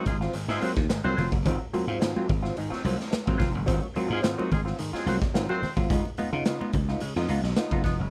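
The recording sounds dry, with little reverb, and the short clip is lifted from a longer piece. It is gritty, funky material in a straight four, and the slap bass leads the low end with a growly, punchy electric tone heard direct and through an amp. The raw garage drum kit sits up front, saturated and boomy in the kick, with a medium-tuned snare, hi-hat and a pumping stone-room sound whose top end is rolled off. A mellow, stringy clav plays stabs through a combo amp with a phaser. A dark, compressed hollow-body jazz guitar adds picked accompaniment through a wah, while very quiet congas with hard hands and a thin, damped skin fill in the percussion. A clear vintage horn section carries a second line with light vibrato until 5.7 s, and the harmony moves from Ab13 to Db9 at 5.9 s.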